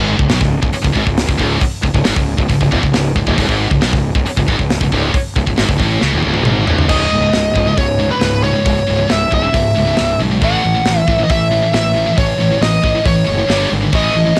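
A straight 4/4 pulse at 136 BPM drives this epic, aggressive heavy metal excerpt in C# minor, where an up-front, polished acoustic drum kit with a punchy kick and medium-tuned snare backs a fuzzy, overdriven fingered electric bass and two bright, picked high-gain rhythm guitars (one scooped) set in the background with a cassette-tape grit, until a drum fill at 6.0 s ushers in a warm, distorted lead guitar melody at 6.9 s over C#m, A and G5 chords, all within a reverberant home cassette recording.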